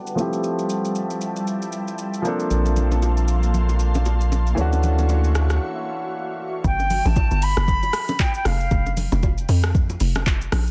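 Dense and heavily limited with a modern digital ambience, this short amapiano excerpt moves at 116 BPM in 4/4 with a swung sixteenth feel and a relaxed, warm mood. A polished grand piano sits up front playing accompaniment beside an ethereal, airy pad whose detuned, chorused chords pump against the beat under a filter sweep, moving through Fmaj9, Bbmaj9 and Dmaj9. An electronic R&B kit with a soft kick, metallic hi-hats, handclaps, rim clicks and shaker runs throughout, joined at 2.5 seconds by bright congas and bongos in the background and a deep, round sine sub bass. After a short break, the drop lands at 6.6 seconds on Gmaj9, where a hollow, bouncy FM log drum takes over the bass line. A mellow silver concert flute then carries the melody with expressive vibrato and tape echo, sounding pure yet distant, before the chords fall away and the groove of drums, hand percussion and log drum carries on.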